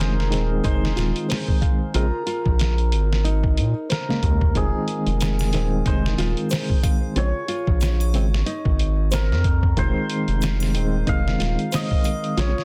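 Trip hop at 92 BPM in F minor, melancholic and cinematic, with a swung sixteenth-note feel and a dry, dense, heavily limited sound, cut from a longer piece that moves between Fm7 and Bbm9. A muffled, pitched-down sampler-style kit with a thumpy kick and soft-clipped snare sits up front beside a round, deep analog bass, while a barky, overdriven tine electric piano with tremolo and tape echo carries the accompaniment. A shimmering hammered dulcimer melody roughened by 12-bit sampler grit rings alongside thumb-plucked nylon-string guitar arpeggios with delay, and a tube shaker and triangle join in the background from 5.2 seconds.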